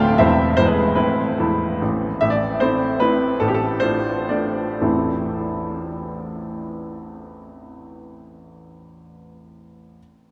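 A solo baby grand piano opens this brief fragment of a romantic classical piece, a triple-time dance built on dotted rhythms. The mood is capricious and wistful, and the pulse bends freely with rubato, easing back noticeably between 1.6 and 4.8 seconds. The piano sounds bright and brilliant, sitting up front, and it reaches from deep bass notes up into its upper-middle register. It rings out in a vast, echoing cathedral space whose long, wet reverb trails behind every phrase. After the slowing, the dance settles back onto its home chord at 4.8 seconds before the passage is cut short.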